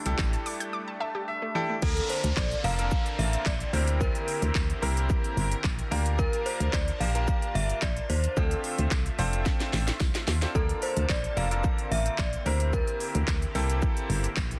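A bittersweet, confident dance-pop excerpt opens on a soft, detuned supersaw swell and lush, sidechain-pumped unison-pluck arpeggios with delay that stop at 1.8 seconds, over a brilliant grand piano, a round, dark FM bass, a punchy, up-front house drum kit with cracking snare and crisp hats, and a faint, jingly tambourine, before a mellow, warbling synth chime carries the melody with ensemble chorus from 1.8 seconds as a background downlifter passes by, all in light reverb and a dense, heavily limited modern master.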